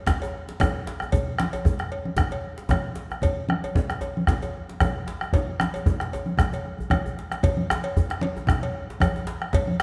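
A round, up-front bombo anchors this driving, earthy West African drum ensemble at 114 BPM in a lightly swung 4/4, joined by bright, damped congas played with soft hands, a tight, cracking djembe with metal rattles, and a close, dry metallic cowbell, all set in a moderate concert hall reverb, with a drum fill from 6.8 to 7.4 seconds leading into a new section of this piece cut from a longer performance.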